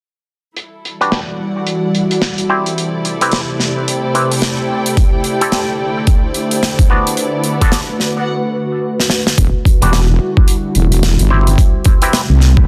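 Swaggering and funky, this short glitch hop excerpt in E minor moves at 109 BPM with a swung sixteenth feel, as a warbling, nostalgic lo-fi pad sustains chords through chorus and reverb while a dark, woody string section fades in from the distance and an overdriven, twangy auto-wah clav fires stringy stabs through a filter sweep, tape echo and 12-bit grit. Airy, polished acoustic drums with low-passed hats and snare run throughout, a gritty, thumpy pitched-down kick arrives up front at 5.0 seconds, and after a drum fill a heavy, saturated wobble bass enters at 9.4 seconds as the Em9 to Am9 progression returns. The sidechain pumping on the pad, strings and clav gives the dense, heavily limited mix its breathing push.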